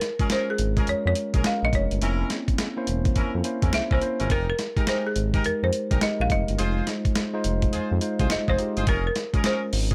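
Slick and bouncy, this short new jack swing excerpt rides a swung sixteenth-note groove. A gritty, tape-warm sampler-style drum kit with a thumpy kick sits up front beside a smooth, nasal synth bass that glides with portamento and vibrato. A dry, woody folk marimba carries the melody over clean tine electric piano chords and tight, distant horn stabs, moving from Bbm7 through C7b9 and Fm11 in a nearly reverb-free room.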